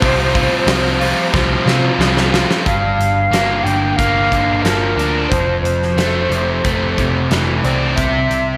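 A moderate concert-hall reverb drapes this short cut from a longer dreamy, wistful shoegaze and dream-pop rock piece at 90 BPM, where an up-front, double-tracked overdriven guitar with subtle chorus carries a dark riff while a distant, hollow silver flute sings a mellow, vibrato-laced melody through tape echo. Underneath, a foam-muted vintage bass gives round, punchy low end, and a big rock kit with a fat snare and punchy kick plays a fill from 1.3 to 2.7 seconds. The harmony drifts from Csus4 to Gm7 at 2.7 seconds and then to Fmaj7 before the chords fall away at 8.0 seconds.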